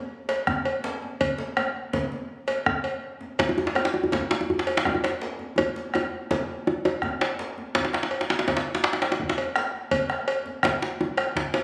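West African traditional drum ensemble in a festive, powerful 12/8, where a metallic cowbell sits close and up front over a round bombo and a deep djembe played with hard hands, a second, medium-tuned djembe with soft hands joins up front at 3.4 s, and a drum fill at 5.6 s leads into the closing section of this fragment of a longer piece, all heard through a phone recording in a wet recital hall.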